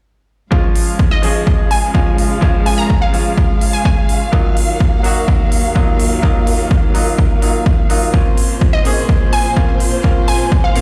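This short cut from a longer festival progressive house track sounds as if it is playing through a big sound system in a bare stone room, with a light reverb hanging around every hit. A punchy, overdriven electronic kick sits up front, joined by crisp, distorted hi-hats, both carrying the hard edge of the large space. Underneath, a clear but worn grand piano plays short-sustained accompaniment through a digital delay. A dark, close-miked string section holds bowed chords with vibrato and portamento, and both the piano and the strings pump against the kick. A glassy, detuned wavetable pluck with a sub octave and a filter sweep carries the crystalline, bright melody, shimmering with chorus and delay; it enters at 1.1 seconds and returns at 8.7 seconds. The harmony moves from Db to Ebmadd9 to Bbmadd9, giving the passage a euphoric, uplifting lift.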